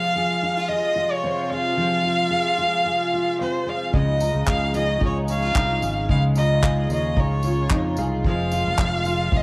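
A smooth, bowed solo violin with vibrato sings the melody up front in this carefree acoustic pop excerpt at 111 BPM, its tone slightly distant. It is supported by a double-tracked, full-bodied fingerpicked steel-string guitar and a soft, floating string section played sul tasto in the background, moving from Fm to Dbadd9 and back to Fm. At 3.9 seconds, a mellow mandolin adds background arpeggios, a dark, round fingered electric bass comes in, and an airy, unplugged drum kit played with bundle sticks brings a punchy kick alongside handclaps and tambourine, all under a light 16th-note swing and moderate spring reverb.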